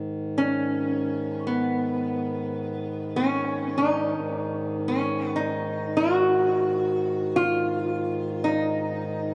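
Spacious and meditative, this brief excerpt of free-time world meditation music in G# dorian, tuned to A4 = 442 Hz, opens on a reedy, breathing pedal harmonium drone sitting up front, joined at 0.4 s by an up-front lap resonator guitar whose metallic, nasal slide melody, played with fingerpicks and washed in tape echo, rings through a long church reverb within a dark, warm production.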